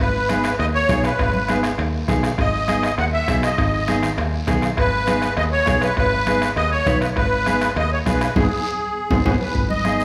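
Fiery and driving, this cumbia excerpt puts a reedy, shimmering musette accordion up front over foam-muted fingered electric bass, a dark, clean electric guitar, a soft-beater bombo, damped congas, a raspy guiro and ringing metal-shell timbales, all bathed in a recital hall's reverb, with a band accent at 8.4 seconds and a clean guitar fill at 9.0 seconds.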